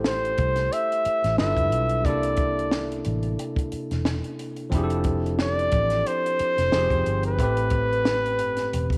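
R&B with a neo-soul lean, this sultry, introspective excerpt from a longer piece moves at 90 BPM in 4/4 with a gentle 16th-note swing in A minor. A mellow flugelhorn carries the melody from 0.1 seconds, sitting up front with light vibrato in a present, jazz-style solo voice. Beneath it, an overdriven tine electric piano comps through a combo amp, its tone bright, barky and gritty. A vintage fingered electric bass, foam-muted and amped, holds down the low end with a dark, round sound. A compact cocktail drum kit plays hi-hat, punchy kick and a high-tuned snare, smooth and up front with a rolled-off top in a small room, and light reverb adds a touch of space as the harmony drifts from Am7 through G13, C13, Fmaj13 and Fm7 before settling on Am9.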